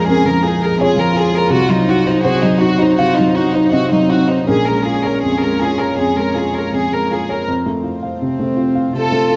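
A rubato 4/4 pulse at 81 BPM carries this reflective, melancholic neoclassical fragment in Bb minor, where an up-front, felt-muted upright piano with audible action noise lays down a mellow, intimate accompaniment, a close chamber violin section sings the melody with light vibrato, sul tasto bowing and a slapback echo, a pure, floating solo cello traces a second line in the background, and a very quiet, dark symphonic string section sustains soft chords through Bbm7, Cdim and back to Bbm7 before moving to F at 7.5 seconds, all under light reverb in a dusky, warm production.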